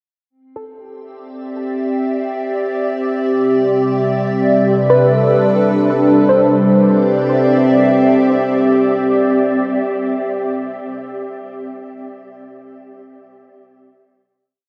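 This complete ambient piece opens at 0.3 seconds with a glassy FM pad fading in, its slow attack and long release carrying sustained chords from C to G over C in a calm 3/4 at 60 BPM in C major. Up front, the pad has a mellow, ethereal, wave-folded tone, coloured by ensemble chorus, phaser and shimmer reverb. At 0.6 seconds a soft, round pluck fades in further back, scattering gentle, decaying arpeggio notes through analog chorus, tape echo and its own shimmer. At 6.3 seconds the harmony settles onto a final Cmaj7 chord that hangs in a huge, cavernous reverb. The dark production, steeped in space, leaves a luminous, peaceful impression.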